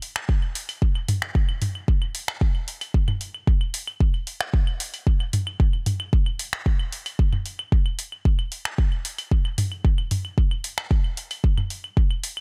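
This techno excerpt moves at a straight 113 BPM in 4/4, with a hazy, deep mood throughout its single section of roughly 12 seconds. A layered electronic kick drum sits up front and anchors the groove with a deep, produced weight, entering at 0.3 seconds. Around it, a punchy analog drum machine supplies finger snaps and hi-hat with a tape-warm grain, running from 0.0 seconds. Electronic claves and toms share that analog character and sit prominently in the mix, pumping with sidechain compression and trailing dub echo that deepens the haze. A digital ambience surrounds the parts, and the passage is clearly cut from a longer piece.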